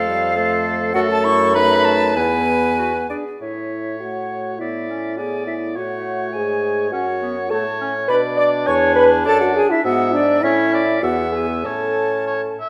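This dramatic, stormy passage from a classical-period wind quintet movement opens with all five players together, a quick 2/4 pulse pushed and pulled by a rubato feel. A bright concert flute carries the melody high above the group, its tone airy and tongued with vibrato, while a clear oboe traces a second line just below it with light vibrato and a smooth top. Underneath, the French horn gives the accompaniment a mellow, vintage colour and sits as the most prominent voice in the blend, joined by a distant, roomy clarinet. A punchy, close-miked bassoon anchors the low end. The opening harmony moves restlessly from F through F#m and B7/F# to E before the music settles onto A at 3.4 seconds. The following stretch circles through F#m, Bm, D/F# and E7/G# before returning to A at 10.4 seconds, then passes through E and lands on A at 11.7 seconds. A moderate recital hall reverb gives the ensemble a natural sense of space.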